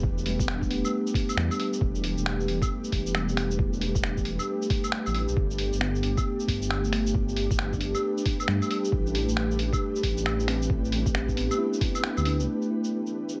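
The drums move in 4/4 with a 63 percent swing on the sixteenths: a muffled, thumpy electronic kick sits beside a lo-fi sampler-style kit of claves, finger snaps, hi-hat and shaker that enters at 0.2 seconds, both pitched down, compressed and tape-softened as if re-recorded in a small room. This is a wistful, ghostly piece of future garage, cut from a longer track. A deep, rumbling detuned saw bass sits up front, saturated and beating, and it pumps against the kick alongside an ethereal, airy pad whose slow-attack chords shimmer with ensemble chorus and their own reverb. A mellow tine electric piano, clean and heard as if through built-in speakers, adds delayed, pumping accompaniment as the harmony moves from Em7 through G and Am7 before returning to Em7. The kick drops out at 12.0 seconds, the bass stops at 12.5 seconds, and the pad, piano and kit carry on into a moderate recital-hall reverb.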